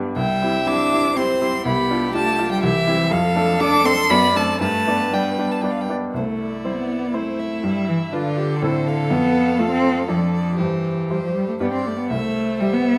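Cut from a longer piece, this quick, lively classical-period piano quartet movement in C major at 121 BPM in 3/4 moves with a spirited rubato feel: a bright, brilliant baby grand piano accompanies from 0.0 seconds, joined at 0.2 seconds by a clear, smooth violin carrying the bowed melody with vibrato up front, a rich second violin line, and an expressive cello with soft attacks and portamento, all in a moderate stone-room reverb captured with close, detailed microphones, with a new section beginning at 6.2 seconds.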